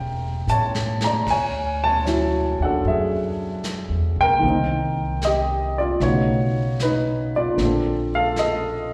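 Swung eighths at a relaxed 76 BPM in 4/4 give this late-night jazz ballad its gentle, romantic sway, heard as an excerpt from a longer performance. A baby grand piano plays accompaniment throughout, sounding warm, intimate and up front, with audible action noise, short sustain, plate reverb and a slapback echo. Beneath it, a pizzicato upright bass with steel strings sits low in the mix with a woody, thumpy tone. A vintage brush kit enters at 0.5 seconds with a fill that runs to 1.3 seconds, then settles in quietly with dark cymbals, a punchy kick, a medium-tuned snare and a rolled-off top end, plus its own slapback echo. The harmony moves from A7b9 through Dmaj9#11, Cm7 and B9 to Bbmaj9. It is a live gig heard through the venue's PA, with moderate club reverb and recital hall ambience around the trio.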